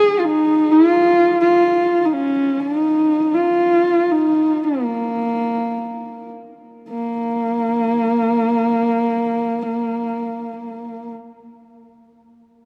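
A dark production bathed in a huge ambient reverb, with a decay of about 4.8 seconds, frames this solemn, vast passage of Mongolian traditional folk music in free time, set in the Bb yu mode. A single up-front horsehead fiddle plays alone from 0.0 to 11.1 s, its bowed horsehair strings sounding woody and husky, colored by vibrato and portamento as it moves between Bb3 and Ab4. The opening phrase slows down before a new section begins at 6.9 s.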